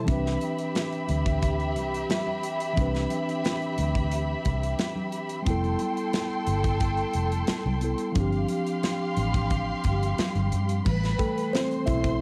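Lush, up-front bowed strings with expressive vibrato and portamento carry a second line in this romantic 1970s-style soul excerpt at 89 BPM in C major, over a mellow, clean tine electric piano that takes a short solo at 10.9 s, a dark, round, foam-muted fingered bass, a polished, airy drum kit with a punchy kick, very quiet thick-skinned congas, and a delicate, bell-like celesta that enters in the background at 11.2 s, with the strings, piano, drums and celesta carrying a cassette-tape tint within a lightly reverberant home recording.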